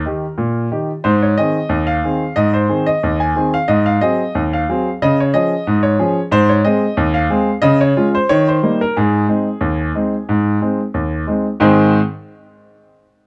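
The sound is dry and close, a small room caught in the manner of a 1970s studio, with the piano placed up front and present. This is a playful, jaunty ragtime piece in 2/4 for solo upright piano, with a light swing on the sixteenths. The instrument's tone is clear and woody, with a polished finish and a long sustain, and it spans from the low bass register up into the upper treble. The harmony moves through Eb, Ab, Ab7 and Db before settling back on Ab around 9.0 s. The opening strain runs until about 11.6 s, when a new section begins just before this short cut from a longer performance ends at 12.9 s.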